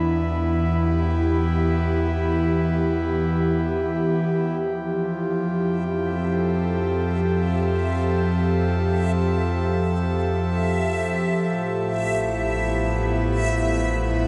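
Ambient and weightless, this peaceful excerpt opens with an airy, breathy chorused pad up front, its filter sweeping over a deep, ominous rumbling drone as the harmony drifts from Em to Fadd9 at 4.6 seconds and then to Asus2. A reedy, mellow harmonium fades in at 4.6 seconds in the background on a single held note, and a reversed, detuned, granular texture with a dreamy glow enters at 5.8 seconds. The whole piece sits in a vast, echoing cathedral reverb with a cassette-tape character.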